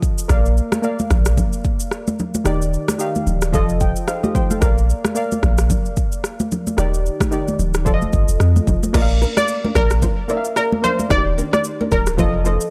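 A deep, punchy sub bass with a pitch-drop attack sits up front in this breezy, romantic afrobeats passage, cut from a longer piece and riding a swung sixteenth-note feel. Alongside it, an electronic afro-pop drum kit, also up front, with a tape-warm tone and deep kick adds crash cymbal, rim click and shaker. Bright, close, dry congas played with soft hands fill out the groove. Round, mellow analog keys with chorus carry the Bb, Ebmaj7 and F7 progression and add a short fill at 3.5 seconds. At 8.9 seconds a small, fingerpicked nylon-string guitar riff with tape echo slips in behind. At 9.4 seconds a detuned sawtooth pluck lead with chorus, tape echo and an evolving, noisy sheen steps forward. The whole recording has a dry, gritty hardware character set in a digital ambience.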